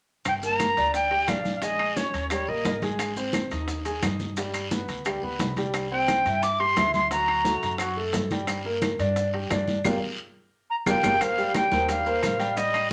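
Salsa at a fiery, driving 175 BPM in G minor, cut from a longer piece, led by an airy, reedy jazz flute up front whose phrases return at 5.9 and 10.7 seconds over a brilliant grand piano with audible action noise and a dark, thumpy pizzicato upright bass on gut strings. Congas with a thin, damped skin drive the percussion, joined by round, low-tuned bongos, ringing metal-shell timbales, woody claves, a raspy guiro and grainy vintage maracas in the background. The band hits an accent from 9.8 seconds, capped by a drum fill that leads into a new section, all set in a wet club reverb.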